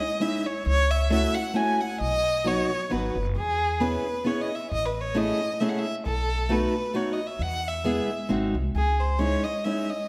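A resonant recital-hall reverb surrounds this short cut from a longer piece, giving the up-front violin and guitar a lingering bloom. It is a bittersweet, whirling musette waltz in E major at 134 BPM in 3/4, with a gently swung eighth-note feel. A single bowed violin, played close, carries the melody with a rich, smooth, even tone and vibrato, touched by tape echo. Beside it, a fingerpicked steel-string parlour guitar with fresh strings gives a boxy accompaniment, and a pizzicato upright bass with gut strings enters at 0.7 s with a woody, dark, thumpy pulse. The harmony moves from C#madd9 through F#m7/C#, B, E6, Amaj7 and B7 to E and G#7, and a new passage begins at 8.8 s back on C#madd9 before the violin's final note at 10.1 s.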